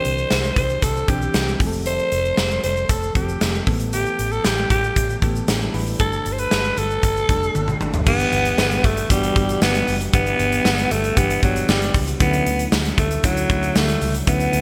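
A raspy, scooped alto saxophone with digital delay carries the melody up front over a big, gated-reverb rock drum kit with a punchy kick and bright cymbals, soft chorused electric-piano-like synth keys, a dark, foam-muted fingered bass and a very quiet grainy tube shaker in this glossy, romantic 1980s-style pop excerpt at 116 BPM, where a drum fill at 7.5 seconds leads into a second section moving from G6 to Dmaj9, all set in a lush hall and a bright digital production.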